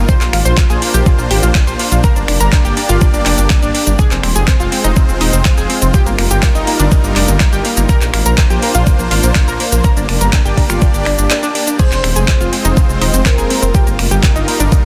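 Driving and emotional, this progressive house excerpt moves at 123 BPM in F dorian, with an overdriven, knocking electronic kick up front and a deep house kit of dark hats, shaker, finger snaps, handclaps and crash, while a deep, rumbling detuned saw bass, a lush supersaw pad and a round analog pluck with chorus and tape echo all pump to the sidechain over a Bbadd9–Gm–Fm–Ebadd9 progression, until a thick unison lead slips in behind them at 11.8 s.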